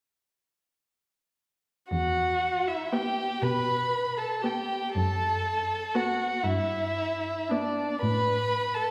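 At 1.9 s, two violins and a cello enter together in a slow, solemn and elegiac movement for string quartet in E minor, unfolding at 40 BPM in a rubato 6/8. The first violin sings a focused melody with vibrato up front, the second violin shapes an expressive line beneath it with soft attacks and portamento, and the close, warm cello carries the bass with gentle slides. At 2.9 s the viola adds a rich, even accompaniment on a single note from further back, all set in a reverberant recital-hall space until the playing ends at 8.9 s in this fragment of a longer piece.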